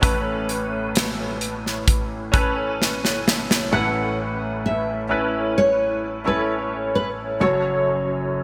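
A tender, emotional pop ballad at 65 BPM in 4/4, this short excerpt is cut from a longer piece and carries a bright, 1980s-style digital production bathed in a lush hall reverb. A clear concert grand piano plays the accompaniment throughout, intimate and up front, with audible action noise, deep bass, long sustain and an ensemble chorus effect. A modern studio drum kit of hi-hat, kick and snare opens alongside it, sounding airy and polished, with a punchy kick, a medium-tuned snare and gated reverb, and it closes with a fill from 2.8 to 3.7 seconds before dropping out. At 3.7 seconds a fingerpicked nylon-string guitar takes the melody, full-bodied and classical in tone, coloured by a lush chorus. The harmony rests on Aadd9 before shifting to F#m near the end.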